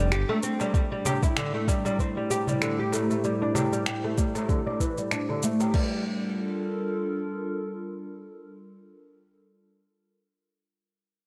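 A woody, fretless oud leads this meditative, lightly swung organic downtempo piece at 96 BPM in G dorian. It plucks double-string arpeggios through 12-bit sampler grit, a low-pass filter sweep and digital delay until 6.0 s, over a warbling, nostalgic tape-like pad whose dark sustained chords carry chorus and sidechain pumping and linger alone to 9.0 s, moving from G7(no3) through Am7 to Gm7. A soft, up-front electronic kick enters at 0.7 s beside a gritty, overdriven sampler-style kit of crash, finger snaps and shaker, while a crisp metal-shell darbuka sits distant in the background and a barely audible downlifter opens the piece inside a lush hall.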